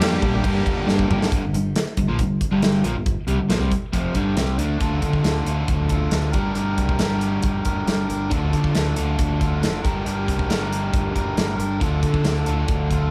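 A dry, close recording with small room ambience opens this gritty, swaggering classic rock passage in G minor, moving at 137 BPM in a straight 4/4. In the first 0.9 seconds a raspy, growling tenor saxophone with vibrato sits very quiet in the mix, joined by a nasal lead guitar with a parked wah and overdrive tucked in the background, while a boxy, woody ladder-braced acoustic guitar with old strings picks a very quiet accompaniment until 1.3 seconds. A drum fill from 0.9 to 1.3 seconds leads into the main body, carried by two picked, overdriven electric guitars, one bright and compressed, the other crunchy, playing riffs that span F2 to Bb4 from the very start through to the end. Underneath, a growling fingered electric bass with overdrive anchors the low end, and a big, up-front rock kit drives with a punchy kick, medium-tuned snare, toms, hi-hat and bright crash cymbals. From 4.8 seconds the harmony swings between Gm and Dm, giving the riffing a heavy, strutting push.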